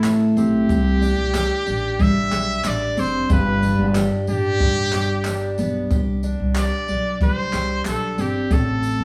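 Acoustic pop in C major at 92 BPM, this easy-going, sunny nine-second clip catches a band playing live together in a stone room with moderate reverb, moving through Am, Csus2 and G. A brilliant, present trumpet carries the melody up front with vibrato and scooped notes, over a full-bodied, picked jumbo steel-string guitar, also up front, and a woody pizzicato upright bass. A compact cocktail kit adds handclaps, tambourine and a tight kick with a dark, rolled-off top, while a separate jingly, dry tambourine sits in the background.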